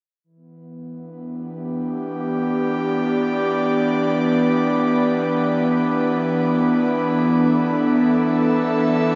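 Spacious and serene, this ambient fragment floats in free time, cut from a longer piece, as an airy, breathy pad with chorus holds sustained chords up front from 0.8 s. At 5.1 s a tense, string-like bowed drone with vibrato slips in beneath it, barely audible. A shimmering reverb with a long tail surrounds the sound, and the top end stays soft and dark.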